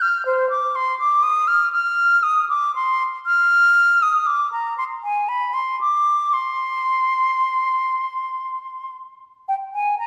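A classical, baroque-style fantasia for unaccompanied silver concert flute in C minor, this brief excerpt moves at a flowing yet grave 59 BPM in 3/4, with uneven beats and free rubato. The solo flute sounds airy and metallic, with tongued notes and vibrato, ranging from C5 to F6 across its 10.1 seconds. It sits in a wet concert hall reverb with a 1.8 second decay, giving the line a resonant church-like space.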